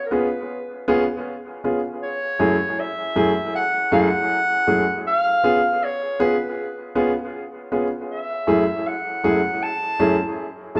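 A lone clarinet opens this short reggae fragment, its mellow, classical-style melody sounding distant and roomy even as it sits up front in the mix. A dark grand piano joins at 0.1 seconds as accompaniment, its mellow tone carrying a dub echo that gives the groove a hazy trail. The unhurried 4/4 pulse carries a gentle swing on the sixteenths, lending a relaxed sway to the longing, bittersweet mood. The harmony moves between C#7 and F#m7, settling back on the minor chord at 8.1 seconds. The duo sounds like a live performance in one large studio, bathed in moderate reverb, and the passage breaks off at 10.8 seconds as if cut from a longer piece.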